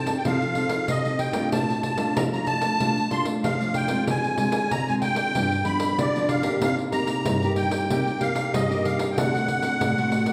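A reedy musette accordion, close-miked and shimmering with its wet tuning, carries a yearning, bittersweet melody up front in this short samba-and-choro fragment, moving at 94 BPM in a straight 4/4. Beneath it, a classical nylon-string guitar is fingerpicked with audible finger squeak through a harmony that passes from F7 through Bbmaj7, Dm7b5, G7 and Cm7 to D7, while a jingly pandeiro joins at 0.1 s with a small-room presence. The recording carries the lingering reverb of a recital hall.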